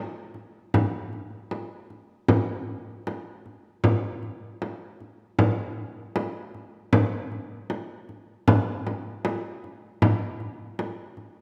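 A straight, even 4/4 pulse carries this solemn, windswept fragment of Mongolian traditional music, cut from a longer piece. A small, bright acoustic frame drum, played with soft hands and sitting up front, is the only part, sounding from 0.3 to 11.3 seconds. Its small-room tone is set within the wet reverb of a scoring stage.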